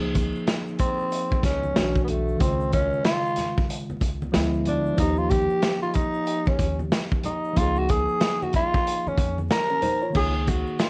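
Warm and cool in mood, this short jazz-hop excerpt rides a swung 4/4 groove, with a crunchy, saturated breakbeat kit sitting up front, its dark cymbals, tight kick and rolled-off top giving the beat a gritty, small-room feel, while a woody, thumpy pizzicato upright bass with transformer saturation and a worn, slightly out-of-tune tine electric piano, lightly overdriven through its built-in speakers, lay down chords that move from Dbadd9 through Cbm7, Ddim7 and Eb. From 0.8 seconds a growling tenor saxophone takes the solo up front, breathy and raspy with subtone, vibrato and scooped notes, as very quiet bright egg shaker and congas with hard hands tick underneath. Light reverb and the warble of old cassette tape, with pitch drift and vinyl crackle, wrap the whole recording in a lo-fi haze.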